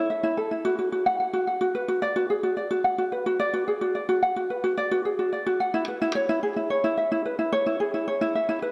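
Wistful and autumnal, this short passage from a longer folktronica piece lingers in a dreamy haze. A lone acoustic ukulele carries it from 0.0 to 8.7 seconds, thumb-plucked with a mellow, light touch that sits up front in the mix. Its lines move between E4 and F#5 over a steady, straight 4/4 feel, tuned to A4 = 438 Hz. A wet plate reverb with a 2.9-second tail soaks the instrument, giving the sound a soft, drifting glow. The result feels intimate yet suspended, like a quiet memory half-recalled.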